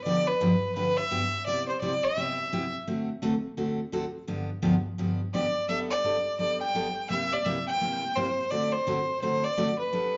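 Country at a brisk 170 BPM with a swung eighth-note feel, cheerful and playful, heard as a short cut from a longer live club performance through the venue's PA, with a moderate room reverb and a dulled top end. A clear, biting fiddle with light vibrato carries the melody up front, pausing briefly at 2.7 seconds before returning at 5.3 seconds, while a bright, full-bodied picked steel-string dreadnought guitar, complete with finger squeak, accompanies throughout. Both parts carry a slapback echo over a progression moving through G7, Cmaj7, D7, Gadd9 and C7.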